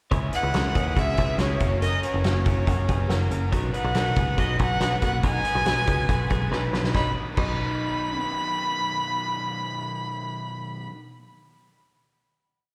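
An up-front bowed violin with smooth vibrato carries a motif-based melody through this youthful, bright jangly indie pop piece at 140 BPM in B major, over a ringing, twangy twelve-string electric guitar figure doubled in sixths with spring reverb and delay, overdriven open-chord eighths strumming from a raw garage guitar, punchy, driving eighth-note picked bass, and a distant, roomy drum kit with a fat snare and dark cymbals whose fill at 6.5 seconds leads into a final chord from 6.9 seconds, the mix sounding like a live gig heard through the venue's PA in a recital hall reverb.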